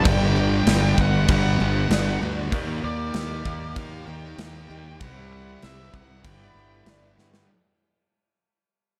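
A growly, overdriven fuzz bass sits up front in this hazy, dreamy shoegaze and dream pop fragment at 97 BPM in G major, moving through Gmaj7, Ebmaj7, Cmaj7 and G6 beside a thick fuzz guitar riff and a big rock drum kit with a punchy kick, medium-tuned snare and bright crashes. A distorted octave-fuzz lead guitar carries the melody with analog delay until 6.8 seconds, while a shimmering, octave-doubled twelve-string acoustic picks arpeggios through ensemble chorus, a compressed, twangy electric guitar riffs in the background with reverse reverb, and a very quiet vintage sawtooth string machine holds soft-attack violin chords. The whole passage sits in a dark, small-room production and fades out, with a drum fill at 7.2 seconds.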